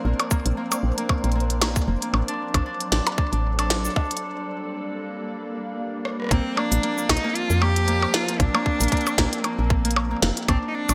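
Swung sixteenths from a clicky, tiny-snared, overdriven glitchy drum kit and a tight electronic kick drive this intricate IDM excerpt, where a round, woody FM bass sits up front beneath a glassy, chorused FM pad, ringing fingerpicked Celtic harp arpeggios with digital delay, and a faint flickering grainy texture that stops at 4.2 seconds, before a break and drum fill give way at 6.3 seconds to a clear, focused bowed cello melody with vibrato, set in a bright 1980s-style digital production.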